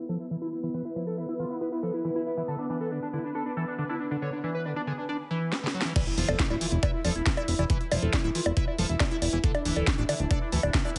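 Through a heavily compressed, radio-like sound with a dulled top end and a digital room ambience, this intense, alien psychedelic trance excerpt opens with a screaming, guitar-like overdriven synth lead with vibrato, a bubbling stepped-filter texture holding sustained chords and a squelchy liquid acid bass riff, all three pumping and the bass and texture filter-swept. At 5.5 s a drum fill from an up-front kit of cracking snare, bright hats, bongos and crash leads into a drop at 6.0 s, where an overdriven knocking kick and a fat, detuned analog bass arrive up front alongside a very quiet electronic impact.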